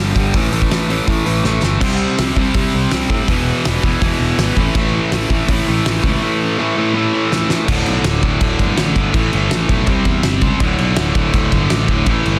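A straight, driving 4/4 at 164 BPM pushes this energetic, upbeat punk rock excerpt, with a loose drum kit of punchy kick, fat snare and dark cymbals and fills at 1.4 and 7.3 seconds leading into new sections built on power chords around A5, C5, E5 and D5. Two bright, distorted guitars pick through the riff from the start, one of them compressed, while a growly picked bass holds down the low end. A third double-tracked guitar joins in the background at 1.8 seconds, thickening a dry, dense and heavily limited mix.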